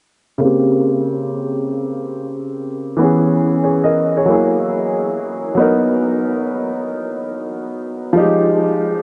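Soaked in a huge, dreamy reverb with an 8.1-second tail and a top end cut at 10.9 kHz, this mellow, nocturnal hip hop fragment at 93 BPM with a swung 16th feel features a woody, vintage upright piano up front alone from 0.4 to 9.0 seconds, its low-pass filter sweeping and a diffuse ambient delay trailing its chords from Bbm69 through Dbm7, Gb9 and Bmaj7 to Fm9.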